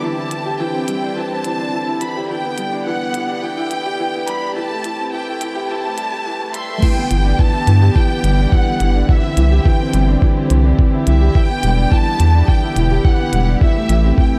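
A hopeful, tender piece of piano and strings electronica opens with a distant, lush violin section carrying the melody over dark, bowed string chords that pump with sidechain and sit behind a low-pass filter, while a woody, slightly detuned upright piano plays a riff through a delay. A minimal electronic kit of clicky hi-hats and crash cymbal, recorded in a small room, sits low in the mix from 0.3 seconds. The opening is a build-up, with a filter sweep on the string section as the chords move through Cadd9, Em7 and Am7. The drop arrives at 6.8 seconds with a muffled, thumpy sampler kick placed up front, and a round, deep analog bass joins soon after with its own sidechain pumping and a mellow, evolving tone. Light reverb and a dark, warm production keep the sound intimate as the cycle returns to Cadd9 and the excerpt ends mid-phrase.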